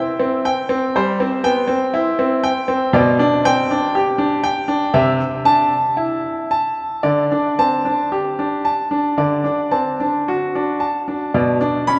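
Classical baroque-style suite movement for solo grand piano, serene yet dance-like at a slow, rubato 55-61 BPM in 4/4, its bright, brilliant, up-front piano ranging from B2 to B5 through chords moving from C to Dsus4 and on to Bm, all bathed in a wet church reverb that lingers for 3.8 seconds in this short excerpt cut from a longer piece.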